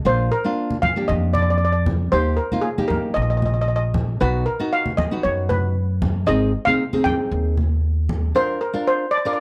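A straight 4/4 calypso groove moves at 116 BPM in Eb major, festive and bouncy, in a short cut from a longer piece. The nylon-string guitar opens at 0.0 s with fingerpicked, classical-style accompaniment placed up front, with a touch of finger squeak. Almost at once the steel pan takes the lead melody, its metallic shimmer struck with medium rubber sticks and set in plate reverb. The pizzicato upright bass, strung with steel, sits up front with a woody growl and drops out at 8.3 s as the harmony lands on Bbadd9. Low-tuned congas with a thick skin, played with soft hands, join at 0.7 s and sound distant, as if in a large room. The chords move through Bb, Eb, B and Abmaj7, and a light reverb colours the room.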